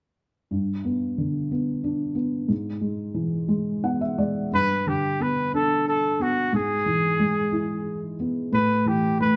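Gentle and sleepy, this short lullaby cut from a longer piece drifts along in a rubato 6/8 at about 60 beats per minute. A felt-muted upright piano opens the accompaniment at 0.5 seconds, its thick felt giving a dark, boxy, intimate tone that sits up front. Near the end of the opening section, the piano plays a brief fill from 3.5 to 4.5 seconds, leading into the second section. At 4.5 seconds a warm trumpet enters with the melody in a narrow range, its soft attack and light vibrato lending a jazz-style tenderness, with a distant, roomy quality. The harmony rocks between G and E over G sharp before landing on A, and a moderate recital-hall reverb surrounds the close, detailed recording.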